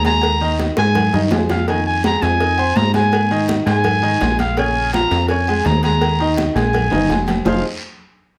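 A clear, punchy trumpet with scooped notes leads this danceable, passionate salsa excerpt in F minor at 166 BPM, up front beside a plucky analog bass and a bright, woody upright piano moving through Ebsus4, Fm7, Ab5 and Bbm7. Ringing agogo bells and timbales, tight cowbell and bongos and distant congas sit in the background, a raspy guiro scrapes at a distance, and drum fills arrive at 0.8 and 6.9 seconds.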